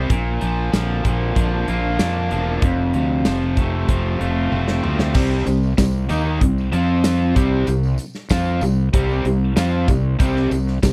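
Swaggering and sunny, this short classic rock cut at 95 BPM pairs a raw, up-front garage guitar and a compressed overdriven electric guitar, both playing riffs over a fuzzy, punchy fingered bass and a big acoustic drum kit with bright cymbals and a punchy kick, moving from Bb and F to C5 and F5 power chords after a drum fill at 4.5 seconds, while a jingly tambourine joins in the background at 5.1 seconds, all in a dry, close 1970s-style small-room sound.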